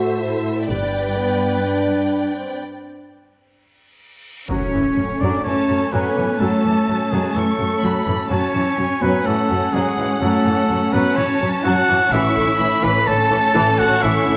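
A straight 4/4 pulse at 126 BPM drives this heroic, dark cinematic orchestral film-score excerpt, where a lush, expressive violin section carries the melody over distant second violins, woody violas, very quiet mellow French horn chords, a vibrato-rich cello bass and bowed double basses, until a break at 2.6 seconds gives way to a huge reverse cymbal from 4.1 seconds and an impact at 4.5 seconds, when the music settles into F# minor and a clear, up-front solo trumpet begins punching out stabs inside a moderate scoring-stage reverb.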